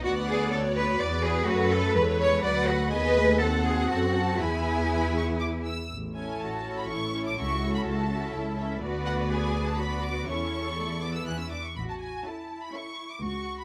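A focused cello section stands out in this graceful, cheerful string orchestra movement in a quick classical-period style at 123 BPM in 3/4 and A major, joined by a smooth, even double bass section placed up front. Above them, a distant violin section carries the melody with vibrato while a lush second violin line and a rich viola accompaniment fill the middle, all bowed with light reverb and close, detailed miking. Cut from a longer piece, it moves into a new section at 5.9 seconds and settles onto A major at 11.8 seconds.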